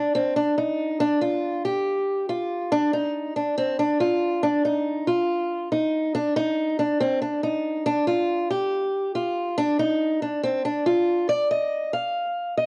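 A picked, old ladder-braced acoustic guitar carries this short hip hop excerpt entirely on its own, its dark, boxy tone sitting up front from the first moment to the last at 12.7 seconds. The mood is eerie and menacing, set at 140 BPM in 4/4 with a half-time feel that makes the pulse sit heavy and slow. The guitar stays in a middle register, between C4 and F5, and its sound carries the character of cassette tape. A moderate booth ambience surrounds it, giving a close, small-room feel to what sounds like a home recording. Around 11.3 seconds the music moves into a new section that runs until the cut.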